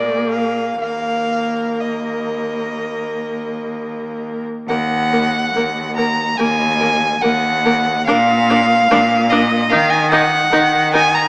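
Cut from a longer piece, this slow, solemn and yearning romantic string quartet movement in Eb minor opens with all four bowed instruments together at a rubato 60-76 BPM in 4/4: a focused first violin sings the melody, a clear second violin sits up front with a higher second line, a smooth viola fills the accompaniment, and a rich, focused cello up front anchors the bass, each player using vibrato, all set in a concert hall's reverb with a small-speaker sound and a new section arriving at 4.7 s before the second violin holds on last to 11.3 s.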